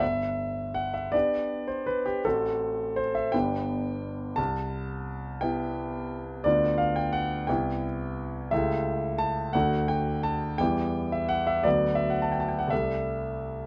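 Passionate and hopeful, this romantic character piece for solo piano unfolds in 6/8 with rubato phrasing, moving from G through Cmaj7 and A7/C# toward D, Em and a closing Am7/C. The concert grand sits up front with an intimate, polished tone, deep bass reaching down to G1, long sustain and audible action noise. Light reverb and a dark production frame this 13.7-second excerpt from a longer work.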